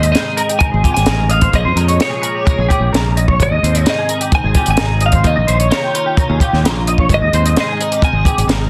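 A dense, heavily limited modern master with light reverb frames this short cut from a longer piece of math rock and midwest emo, moving at 130 BPM in a straight 4/4 in Ab major. The mood is intricate and wistful, with the harmony moving through Abmaj9, Bbm7, Abmaj9 and Eb9 before returning to Abmaj9 at 7.1 seconds. A twelve-string electric guitar carries the melody between Db5 and Ab5, its bright, picked tone set in plate reverb, while a second twelve-string supplies compressed accompaniment from F2 to Ab4 through ensemble chorus. A clean, twangy electric guitar adds arpeggios in the G4 to Eb5 range, treated with both chorus and plate reverb. Underneath, an overdriven fingered electric bass growls up front, and a compact cocktail kit of hi-hat, punchy kick and high-tuned snare sounds dark and smooth, its top rolled off in a small room.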